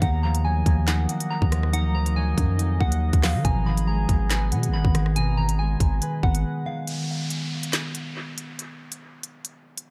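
A half-time drill groove at 140 BPM in 4/4 drives this cold, dark hip hop piece: a hard-clipped kick, woody snare, crisp hi-hats, rim clicks and handclaps sit up front with dub echo, under a deep, sine-toned 808 bass that hits fast and decays long. Over Ebmadd9 and Abm chords, a soft, pure FM bell carries the melody through chorus, phaser, a low-pass filter and dub echo, while a velvety sawtooth lead with vibrato hums in the background, a fingerpicked concert harp rings out, and a distant, roomy woodwind section holds classical-style chords with light vibrato. The bass stops at 6.4 s and the bell, lead and woodwinds stop at 6.8 s, leaving the drums, the harp (until 9.3 s) and an up-front electronic downlifter in a dry, echo-heavy mix cut from a longer piece.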